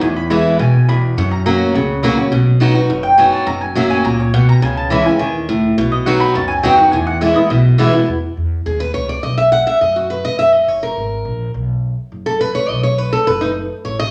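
Up front and warm with fresh strings, a picked parlour steel-string acoustic guitar drives this lively, virtuosic bluegrass excerpt at 208 BPM, first backing a round, double-strung mandolin solo that runs until 7.6 seconds and then taking its own solo from 8.1 seconds, while a woody pizzicato upright bass anchors the low end beneath a generous large-studio reverb.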